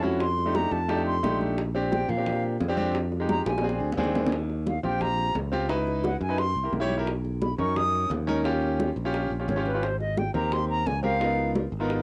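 Afro-Cuban jazz in a lively, sunny mood, cut from a longer piece, where a pure, vibrato-rich silver flute with a soft attack carries the solo over a brilliant, long-sustaining concert grand piano and a growly, punchy fingered electric bass, with tight, high-tuned, saturated bongos alongside thin-skinned congas tucked in the background, a drum fill at 3.5 seconds, and a cassette-tape grain on the flute and piano in a small, lightly reverberant room.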